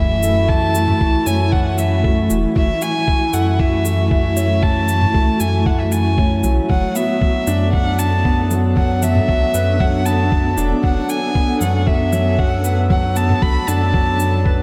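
A background sub drop opens this intimate, cinematic piano-and-strings electronica piece at 116 BPM, as a felt-muted upright piano riff, a rich, close violin melody with light vibrato and an airy, sul tasto bow, a blurred granular cloud pad and a round sine sub bass with sidechain pumping all begin together. Small-room electronic shaker and toms enter at 0.2 seconds, followed by a muffled, thumpy, tape-warm electronic kick at 0.5 seconds, while the mellow piano and violin trail a diffuse ambient delay. The dreamy mix is soaked in cathedral reverb as the harmony moves from F#m7 to Bm7 at 6.7 seconds.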